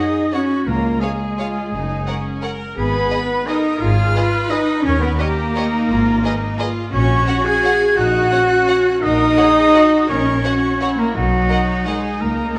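The mellow French horn section stands out most, holding sustained chords in the middle register throughout this elegant, sweeping classical excerpt in 3/4 at 172 BPM, its beats uneven and pulled by rubato in F# major. Above it, a bright, airy concert flute with soft attack and vibrato traces an expressive second line, joined by a distant, roomy oboe with light vibrato and a rich violin section carrying a smooth, even counterline. The melody sits with a second violin section, expressive and vibrato-laden yet kept in the background, while a clear, intense viola section supplies distant bowed accompaniment. A rich cello section and a smooth double bass section, entering at 0.7 s, anchor the bass, and a very quiet, round timpani stroke with soft mallets sounds briefly from 0.7 to 1.2 s. The harmony moves from F#5 through C#, G#m and D#7 before settling on B, all set in a recital hall reverb that gives the fragment its sense of space.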